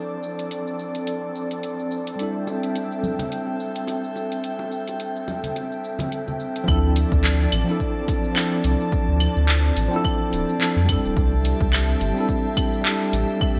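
A deep, round sine sub bass sits up front in this wistful sunset chillout excerpt, arriving at 6.7 seconds together with a punchy, layered electronic kick drum. From the start, a clean tine electric piano with digital delay supplies the accompaniment while an airy, breathy, detuned pad treated with chorus sustains chords that move between Dm7 and C6. A smooth R&B drum kit of claves, handclaps, shaker and metallic hi-hats carries a gentle swing on the sixteenths, heard in a large room. Acoustic bongos and congas with a live-room character join at 2.5 seconds and stop at 6.4 seconds, just before the low end fills in. Light reverb and digital ambience frame the bright, 1980s-style digital production, giving the whole a mellow, warm glow.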